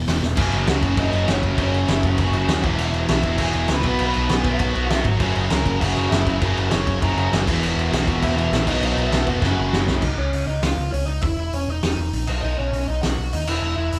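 Punk rock at 199 BPM with a rowdy, energetic drive, where two bright overdriven rhythm guitars and a sludgy, double-tracked guitar in the background pound out a riff until 10.0 s over a growly, punchy picked bass and a loose, fat-snared indie drum kit with dark cymbals, while a bluesy, distorted lead guitar carries the melody from 0.7 s, all captured live in one large reverberant room before a drum fill drops the band into half time for the final stretch.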